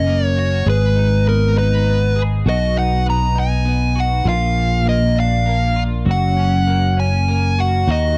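This short passage, cut from a longer piece, is a dramatic, melancholic pop ballad in six-eight metre, with all three parts sounding together from the opening moment. A dark, smooth lead guitar carries the melody up front, its overdriven, picked tone sitting high in the register. Beneath it, a double-tracked twelve-string electric guitar supplies the accompaniment with a bright, clean, twangy shimmer that is compressed and picked. A sustaining fretless electric bass grounds the harmony, its amped, growly sound placed prominently close in the mix. The chords move from Gb through Abm and B to Bb before returning to Gb at 6.1 seconds, and the whole passage has the dry, close feel of a 1970s-style studio recording touched with digital ambience.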